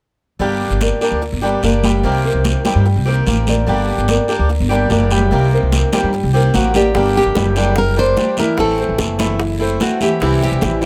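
Close, detailed and nearly dry, this nostalgic, danceable Cuban son and guajira excerpt moves at 147 BPM in G harmonic minor. It is built on a woody, thumpy pizzicato upright bass up front, deep, boxy concert grand piano arpeggios with long sustain, a bright, picked swing-style acoustic guitar, ringing high-tuned congas in the background and a raspy guiro, while the chords cycle between Gm and Cm7 before moving to Am and C. A fingerpicked classical nylon-string guitar takes the melody from 6.5 seconds, and tight, hard-hand bongos join in the background at 6.9 seconds.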